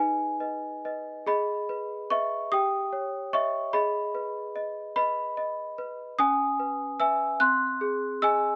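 A lone worn celesta opens this fragile, eerie classical lullaby, its bell-like, sweet voice sitting up front, struck with hard felt hammers and carrying a slightly out-of-tune, vintage, band-limited tone. Moving in a rubato 6/8 lilt, the solo line shifts into a new section at 1.3 seconds, while close, detailed microphones and light reverb catch its delicate shimmer. The 8.6-second passage is cut from a longer piece.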